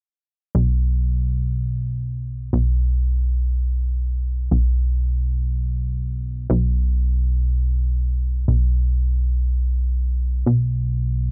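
A dry recording with little reverb opens on a dark, hypnotic techno fragment cut from a longer piece, tuned slightly low to A4 = 439 Hz. A lone plucky analog bass sits up front from 0.5 to 11.3 seconds around B1, its punchy, funky notes built from sawtooth, square and triangle waves with a ring-modulated edge. Each note has a fast attack and a filter pluck, then decays into a mellow tail as the tone keeps evolving.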